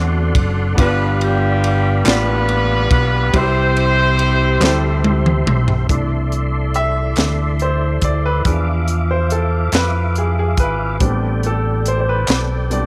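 Slow gospel in 6/8 at 47 BPM in C major, with an uplifting, hopeful mood, cut from a longer piece. A mellow horn section with octave doubling and light vibrato carries the melody up front until 5.5 seconds, while a clear baby grand piano with short sustain accompanies and a tonewheel organ holds sustained chords through a slow rotary speaker, light overdrive and chorus vibrato, its key click audible. A round, punchy fingered electric bass sits up front beneath them. A polished fusion drum kit with dark cymbals, a high-tuned snare and a tight kick enters at 0.3 seconds, and group handclaps, close and dry in the background, join at 2.1 seconds. A drum fill leads into a piano solo from 5.9 seconds over chords moving from C69 through E7b9 to Am11, all set in a small room ambience.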